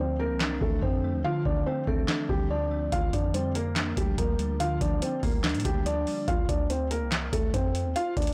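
Dark and eerie, this short hip hop excerpt rides a half-time trap feel at 143 BPM in D minor, moving from Dm7 to Gm7/D at 2.9 seconds and back to Dm7 at 6.3 seconds. A felt-muted upright piano carries the melody up front, its thick-felt tone soft and intimate, with a digital delay trailing its notes. Beneath it, glassy digital keys add detuned, full-bodied chords treated with chorus and a filter sweep, dropping out at 6.3 seconds. A deep, boomy 808-style bass with a sine core and a noise layer anchors the low end throughout. The booming analog drum machine enters at 0.4 seconds with a deep kick, crisp snare, handclaps and metallic hi-hats, its tape-tinged kit sitting up front, with a short room on the snare, claps and hats. The whole recording sounds blown-out and overdriven, giving the mix a gritty, saturated edge.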